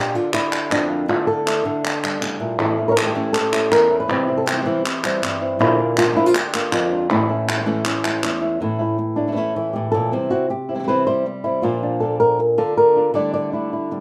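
A thumb-plucked flamenco guitar carries the melody up front, its warm acoustic tone ranging from E2 to D5 across this fragment cut from a longer flamenco piece. It has a dramatic, mournful mood at a straight 159 BPM in 4/4, tuned to A4 = 441 Hz. A second fingerpicked flamenco guitar plays stabs beneath it, sitting lower in the mix between A2 and F4, over a progression that moves through Bb, Dsus2, A and C. Crisp palmas hand claps sit close yet carry the distant echo of a large room, and they stop at 8.4 s. From 8.6 s a nylon-string guitar takes a solo as the harmony cycles through C, Bb and back to Dsus2, all within a moderate studio reverb.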